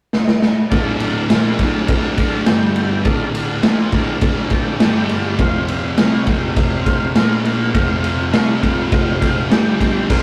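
A drum fill opens this gritty garage rock excerpt at 0.1 s, and the up-front kit then drives a straight 4/4 groove with a punchy kick, a medium-tuned snare, crash and ride, all dark and rolled-off at the top. From 0.7 s a thick, double-tracked fuzz guitar picks a low riff through Dm, G5, F5 and Bb5, while a buzzy, overdriven combo organ holds sustained chords above it with heavy vibrato and adds a fill near the end at 8.9 s. The rough rehearsal-room sound carries a short booth ambience and tube saturation that keep the whole performance raw and close.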